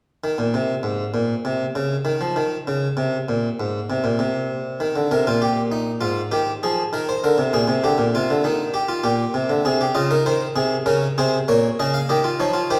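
Joyful and elegant, this excerpt from a longer baroque-style three-part fugue at 99 BPM in 4/4 features a solo French-style harpsichord, plucked and round on a single set of strings, placed up front from 0.2 s in a reverberant recital hall as the opening unaccompanied line gives way at 4.8 s to harmonies centred on Eb.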